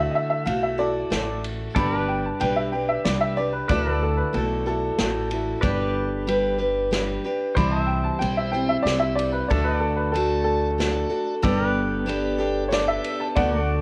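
Easygoing and sunny, this honky-tonk and classic country excerpt sways in 3/4 at 93 BPM in G major, with a slightly detuned, woody upright piano soloing over a bright, up-front picked dreadnought acoustic guitar, clean pedal steel volume swells, a thumpy pizzicato upright bass and a distant, roomy acoustic drum kit with dark cymbals and a punchy kick, while a piping, lightly overdriven tonewheel organ with key click and slow rotary speaker joins at 8.2 seconds, all under light reverb and the warbly pitch drift of worn cassette tape.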